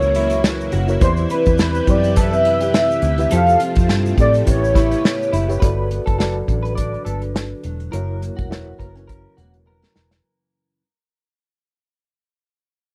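A velvety sawtooth synth lead carries the melody through the first 5.3 seconds, shimmering with lush chorus and tape echo, in this nostalgic, hazy piece of indie bedroom pop at 104 BPM with a light sixteenth-note swing. Up front beneath it, an unplugged drum kit played with bundle sticks gives a punchy kick and an airy, polished snare, while a dark, foam-muted fingered electric bass rounds out the low end. A reedy electric piano with fast tremolo and a cassette-tape tint, a fingerpicked nylon-string guitar with finger squeak sitting in the background, and a slightly broken-up electric guitar through a small old amp fill the middle. A bright string machine holds sustained chords beside a grainy tube shaker until 5.6 seconds, over a progression that moves through chords such as F#7, Cmaj7, Fmaj7, A9 and Gmaj7. From there the music fades out, a short drum fill closes it, and the sound stays dry and close in a 1970s studio manner.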